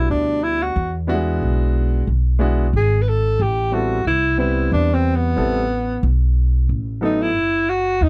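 This is a cool, nocturnal jazz-hop piece at 91 BPM in 4/4, with a lazy swing on the sixteenths and a hip hop sway in E minor. A breathy tenor saxophone carries the melody as a solo for the full 8.1 seconds, mellow and whispered, with subtone, vibrato, a soft attack and scooped notes that feel intimate yet slightly distant and roomy. Beneath it, a warm, polished baby grand piano plays accompaniment through chords moving from Em9 to E7, then Am7 and B7, before dropping out at 7.3 seconds. The upright bass is plucked, woody and growly, with a thumpy steel-string tone sitting up front alongside the piano. The sound is dry and close in the manner of a 1970s studio, with very little reverb, and the passage is cut from a longer piece.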